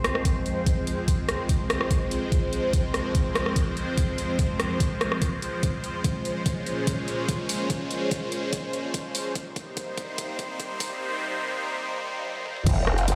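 Heavy and aggressive, this half-time wobble dubstep build-up at 145 BPM in F minor rides a long filter sweep, with a lush, detuned supersaw pad holding sustained chords through a phaser and sidechain pumping as the harmony moves from Fm to Bbm7 and Cm7. An overdriven dubstep kit with bright hats, crash, rim clicks and toms plays over a knocking electronic kick, both up front and re-recorded in a small room, with drum fills at 6.0 and 12.3 seconds. At 12.7 seconds a saturated, growling bass with formant-filtered wobble and chorus arrives, and the whole mix sits in a moderate plate reverb, played back on a big sound system in a bare room.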